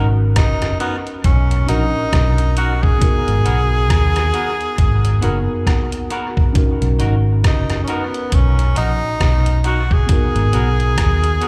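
Smooth and tender, this lovers rock reggae excerpt in B major drifts at 68 BPM with a swung sixteenth feel, moving between Bmaj7 and G#m9 as a breathy, vibrato-laden tenor saxophone carries the melody through tape and slapback echo from 0.4 seconds. Underneath, a dark, round, foam-muted fingered bass sits up front beside a detuned 8-bit drum machine with a thumpy kick, hi-hat and rim click, while a twangy, scooped electric guitar adds stabs soaked in dub echo. A worn, slightly out-of-tune tine electric piano provides accompaniment with slapback echo and steps forward with a fill from 5.2 to 6.6 seconds, all set in the ambience of a live gig heard through a club's PA.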